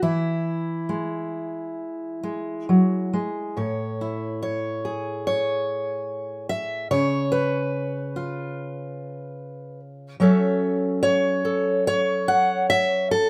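Folk fingerstyle piece cut from a longer work, with a pastoral, unhurried rubato feel in four, played by a lone fingerpicked steel-string dreadnought guitar that sounds full-bodied and up front in light reverb, moving from an E chord through Amaj7 at 3.6 seconds, C#7 and F#m7 before it breaks off at 13.3 seconds.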